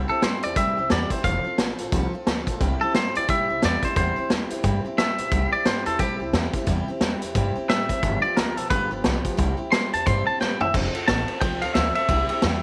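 An upbeat, rollicking rockabilly excerpt in C major at 177 BPM with a swung 4/4 feel, where a bright, twangy electric guitar carries the melody up front through tape echo over a full-bodied picked steel-string acoustic guitar, a woody, thumpy pizzicato upright bass on gut strings, and a gritty, saturated vintage drum kit with dark cymbals, its drum fill at 10.4 seconds leading into a new section under light reverb and studio ambience.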